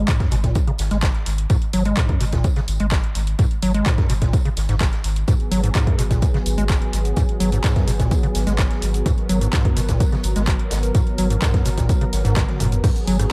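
Hypnotic and raw, this acid house excerpt rides a squelchy, resonant square-wave acid bass riff roughened by overdrive, 12-bit sampler grit and dub echo, alongside a deep, round analog bass, both pumping under sidechain, and an up-front, tape-warm electronic kick. A punchy analog drum machine supplies crash, handclaps, hi-hat, ride, rim click, shaker and toms with dub echo, while a very quiet acoustic snare and tambourine sit beneath. At 5.3 s a detuned sawtooth pad enters with chorus and a slow attack, and a drum fill arrives at 12.4 s in a dry, echo-heavy mix.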